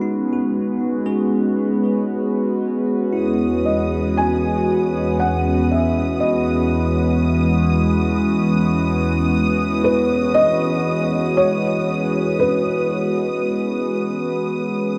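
Peaceful and luminous, this slow ambient excerpt in 3/4 at 58 BPM drifts in E major, moving from B to Emaj7 at 3.1 s inside a vast, echoing cathedral reverb. A warbly, nostalgic tape-like pad holds sustained chords up front with chorus and phaser, while a very quiet, bell-like tine electric piano plays arpeggios from the start. From 3.2 s a distant, lush violin section adds a high vibrato texture, and at 3.7 s an evolving, vintage analog drone settles in beneath a soft, felt-muted upright piano melody that fades in through diffuse delay.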